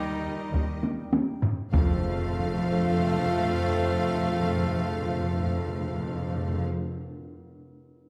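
Up-front, band-limited taiko drums struck with hard sticks drive a fill from 0.8 s and drop out at 2.9 s in this majestic, heroic excerpt of an epic orchestral film score in 7/8 at 196 BPM in F major, which slows before moving from Eb to F at 1.7 s, where timpani enter and a huge, bright impact sounds in the background, beneath lush bowed violins carrying the melody and a second line, very quiet violas, soft-attack cellos and rich, focused double basses on the bass, sustained chords from warm French horns, a tight trombone section and a roomy woodwind section, and clear, distant trumpet stabs, bathed in concert hall reverb.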